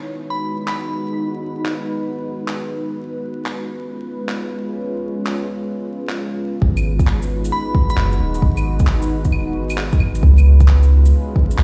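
A stone-walled room and the crackle of vinyl frame this short, melancholic future garage excerpt, which sounds as though it is being played on a big sound system in a bare space. It moves at 133 BPM in 4/4 with a 67% swing on the sixteenths. A deep, moody pad made of detuned sawtooth and sub-octave layers holds sustained chords from G#m7 to C#7 throughout, roughened by vintage 12-bit sampler grit and pumping against the sidechain under chorus and its own reverb. A glassy, crystalline FM bell rings out a brief high B5 twice, at 0.3 and again at 7.5 seconds, trailing phaser and analog delay. Overdriven electronic handclaps, shaker and claves, re-recorded in a small room, come in at 0.7 seconds. At 6.6 seconds a soft, round 808-style bass and a deep, overdriven kick push up front, giving the ghostly second half its weight.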